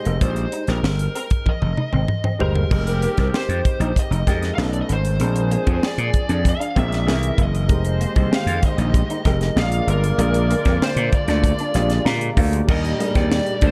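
Polished 1980s jazz-funk pop at 96 BPM, upbeat and glossy, where a dark, overdriven lead guitar carries the melody over an intimate grand piano with audible action noise, a lo-fi background guitar riff with ensemble chorus, a growly, punchy slap bass and a tight, dry funk kit with a high-tuned snare, while a smooth pop horn section with tape echo adds a second line from 2.7 seconds, lush bowed strings enter very quietly at 7.7 seconds, and a drum fill and a piano fill punctuate the jazzy chord changes in a dark studio reverb.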